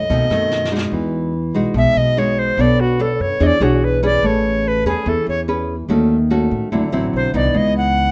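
Sophisticated and romantic, this bossa nova excerpt moves at 145 BPM in E major, its rich jazz harmony passing from Emaj9 through Amaj9 to C#m9. A dark, smooth brushed drum kit with a boomy kick plays only briefly at the opening, closing with a fill that ends at 0.9 seconds, when the pure, reedy alto recorder, up front and playing from the start, moves into a tongued solo with a distinct chiff. Beneath it, an old-stringed nylon-string guitar is fingerpicked in a woody classical style alongside pizzicato steel-string upright bass, all set in light reverb.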